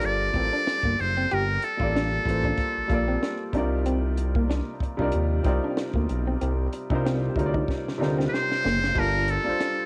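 This home cassette recording has light reverb, setting a late-night, introspective mood for a short cut of R&B and neo-soul in G minor at 94 BPM, with a lightly swung sixteenth-note feel. Up front, a trumpet with a metal mute carries the melody in a buzzy, breathy jazz voice with light vibrato, playing from 0.0 to 3.5 seconds and returning at 8.3 seconds. Beneath it, an intimate concert grand piano gives the accompaniment, its action noise audible and its low register deep, while a smooth synth bass built from sawtooth and square waves sustains a mellow, evolving tone with vibrato. In the background, an electric guitar through a small old amp plays a slightly broken-up, picked second line through tape echo until 8.8 seconds. A compact cocktail drum kit with dark cymbals, a high-tuned snare and a punchy kick keeps a dry pulse and plays a fill from 7.7 seconds. The harmony moves from Gm11 to Cm11 and lands on Gm9 at 9.0 seconds.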